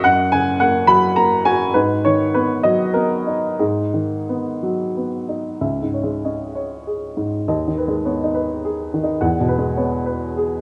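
A rubato 3/4 pulse drifting between 88 and 107 BPM carries this short excerpt of reflective, wistful neoclassical minimalist piano in G# minor. A dark, woody upright piano plays alone throughout, mellow and up front, ranging from C#2 to B5 as the harmony moves from F# and G#m7 into a second passage at 5.6 seconds through C#m and G#m/D# before settling on Eadd9. A moderate scoring-stage reverb gives the natural-sounding instrument a gentle sense of space.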